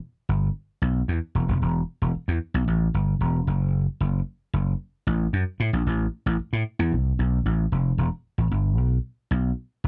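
A dry, close 1970s-style studio sound with light reverb frames this funky, slick funk fragment at 113 BPM in a straight 4/4, where a solo vintage electric slap bass, bright, growly and punchy, sits up front from 0.3 s, moving between E1 and A2 before shifting into a new section at 8.0 s and playing on until the cut at 9.9 s.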